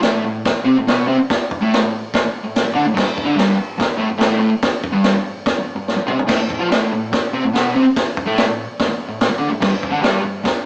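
A double-tracked fuzz guitar riff and a vintage drum kit with dark cymbals, a tight kick and a medium-tuned snare kick off this swaggering, gritty garage rock fragment cut from a longer piece, moving from Am to G5 before a drum fill at 5.9 seconds leads into an unharmonized stretch, all captured as a rough rehearsal-room recording with a small room's reverb, vinyl crackle and a small-speaker sound.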